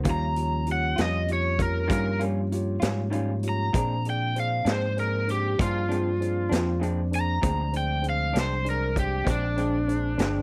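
This slow blues in 12/8 moves at 65 BPM with a laid-back, gritty mood, and it is a short cut from a longer piece. The crunchy overdriven guitar carries the melody up front, bright and picked, while the fingered electric bass sits just as close with a round, punchy, amped tone. The raw garage drum kit plays hi-hat, kick and snare, with a boomy kick, a medium-tuned snare and a saturated, rolled-off top. Behind them, a second electric guitar through a small old amp adds slightly broken-up, lo-fi accompaniment with tremolo. A dark grand piano with audible action noise and a very quiet, flute-like tonewheel organ with key click and slow rotary speaker fill in the chords, moving from Eb9 at 0.1 seconds to Bb9 at 3.7 seconds. The sound is a dry, close 1970s-style studio recording with a small room reverb.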